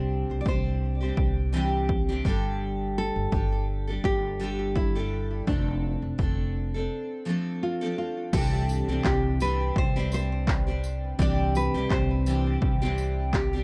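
Dark, reverberant studio production frames this carefree, heartfelt acoustic pop excerpt in C major, moving at 84 BPM in 4/4 with a light sixteenth-note swing. A deep, fingerpicked nylon-string guitar carries the melody through a delay, while an up-front, double-tracked steel-string dreadnought with old strings supplies full-bodied picked accompaniment, and a woody pizzicato upright bass anchors the low end. A punchy analog drum machine enters at 0.5 s with kick, handclaps, tambourine and crash cymbal, as the chords move from Cadd9 through Gsus2 and F6 before returning to Cadd9 at 8.3 s.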